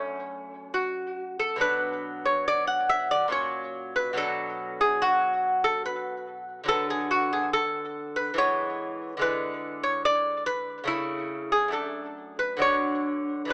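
A solo lute, fingerpicked and up front, carries this flowing, radiant baroque-style classical dance in 3/4 at about 71 BPM, its rubato phrasing spanning F#2 to F#5 on bright, delicate nylon double strings, some doubled at the octave. The harmony moves from F#m through Bm and E7/D before settling on D at 12.6 seconds, where this 13.5-second portion of a longer piece breaks off. Light reverb surrounds the lute, and the recording has a small-speaker sound.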